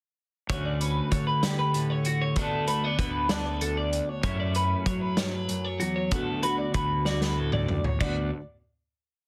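A lilting 6/8 pulse at 64 dotted-quarter beats per minute drives this short, complete math rock and midwest emo piece in D major, its mood wistful and playful. A loose indie drum kit sets the groove in a roomy studio space, pairing a punchy kick and medium-tuned snare with dark cymbals, hi-hat and toms, and it closes the phrase with a fill from 7.1 to 8.0 seconds. A bright, twangy twelve-string electric guitar sits up front with a compressed, picked ostinato of arpeggios touched by slapback echo, while a clean electric guitar adds syncopated fingerstyle accompaniment bathed in lush chorus. Underneath, a fuzz-laden fingered electric bass with overdrive stays locked to the kick drum. The harmony moves through Dmaj7, Bm7/D, F#m7 and D6 before settling on a final chord at 8.0 seconds, all held in light reverb and a dense, heavily limited modern master.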